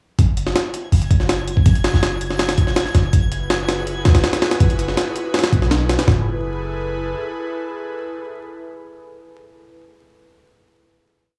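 Drum and bass with a jungle edge, nostalgic and atmospheric at 163 BPM in F# minor. It opens straight into a drop, with a gritty, pitched-up sampler-style drum kit up front playing a heavily chopped breakbeat with a thumpy kick and high-tuned snare over long, deep, boomy 808-style bass notes, while a twinkling granular texture holds a bright high note with octave-up shimmer and its own reverb in the background. An airy, breathy pad with chorus and vintage 12-bit sampler grit enters at 3.1 seconds and carries on after the drums stop at 6.2 seconds, with the bass lingering beneath it until 7.1 seconds, sustaining a final F#m11 chord to 9.8 seconds amid vinyl crackle.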